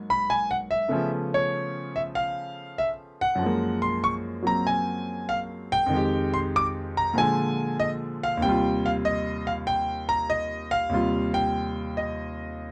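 Solo jazz at 96 BPM in a swung 4/4, playful and sophisticated, cut from a longer piece and carried entirely by a warm concert grand piano spanning Eb2 to D6. The piano sits up front with a deep bass, a smooth, vintage character and close, detailed miking under light reverb. Over these 12.7 seconds it moves through rich extended harmony, from Abm9 and Dbaug7 to Gbmaj9, then Fm9 and Bb7 before settling on Eb69.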